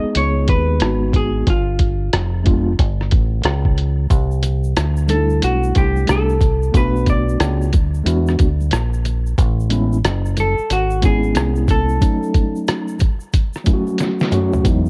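Smooth and cool, this jazz-hop excerpt rides a swung hip hop groove in 4/4, with the character of a home cassette recording. A clean, picked hollow-body jazz guitar carries the melody, while a mellow tine electric piano, heard through its built-in speakers, supplies the chords beneath it. Up front, a deep, dark and round fingered electric bass sits beside a compressed, pitched-down sampler-style drum kit with a thumpy kick, a medium-tuned snare, rim clicks, hi-hat and toms, all of the kit muffled and tape-warm. From 4.1 seconds, a tube shaker and congas add ringing, close and dry acoustic percussion in the background. The harmony drifts through jazzy chords from G#m7 through C69 and Amaj7 to F#m6, and a drum fill at 14.0 seconds rounds off the passage.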